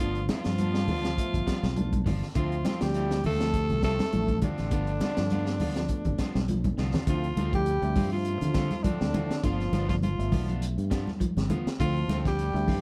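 A raspy tenor saxophone leads this driving, defiant afrobeat excerpt over a round, dark fingered bass, a gritty breakbeat kit with a high-tuned snare, ringing congas in the background, a very quiet clear trombone section and buzzy metal-muted trombone on the second line, a reedy electric piano with a fill at 1.5 seconds, clean semi-hollow guitar arpeggios, twangy slightly broken-up guitar stabs, and a drum fill at 6.5 seconds, all in a dry mix.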